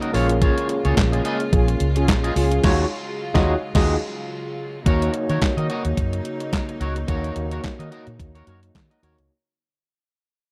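This slick, late-night slice of early-eighties boogie funk opens at once on a crisp 8-bit drum machine, its thumpy kick, medium-tuned snare, hi-hat, handclaps and crash cymbal sitting up front with a tape-softened, small-room character. Alongside it, a barky, overdriven tine electric piano with medium tremolo plays the accompaniment through a combo amp. A studio string section holds soft-attack chords bowed sul tasto with light vibrato, and an electric guitar at the edge of break-up adds a twangy riff coated in lush chorus. A dark, round, foam-muted fingered bass joins a moment later, punchy and close. At 108 BPM in Eb minor with a gentle swing on the sixteenths, the harmony moves from Bbm7 to Ebm11 to Ebm7, and a mellow, detuned sawtooth synth brass line with chorus, phaser and slapback echo appears briefly from 1.5 seconds. The band leans into an accent from 2.6 to 4.9 seconds before the music fades out from 4.9 seconds under light digital reverb, cut from a longer piece.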